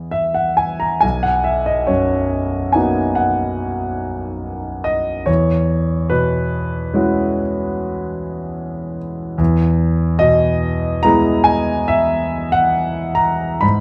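Unhurried and rubato in an uneven 5/4 at 71 BPM, this dreamy, luminous impressionist solo piano excerpt features a clear, up-front concert grand with deep, natural bass ranging from B1 to B5, drifting through Emaj7, Bmaj7 and E69 harmonies in a dark production softened by light reverb.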